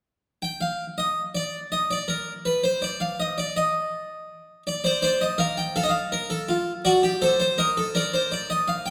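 A solo harpsichord, plucked and full-bodied in the Italian manner with two sets of strings sounding together, sits up front in this brief baroque-style fugue written in three parts. The music is in 6/8 with a straight feel, and its mood is driving and serious. The harpsichord enters at 0.4 seconds with an unaccompanied opening line before harmony takes shape, moving through G minor, F major over A, D7 over F-sharp and a rootless G minor over B-flat. The writing stays within a compact register from F4 to G5. A lingering recital hall reverb surrounds the instrument, giving each plucked note a resonant tail before the passage breaks off at 8.9 seconds, cut from a longer piece.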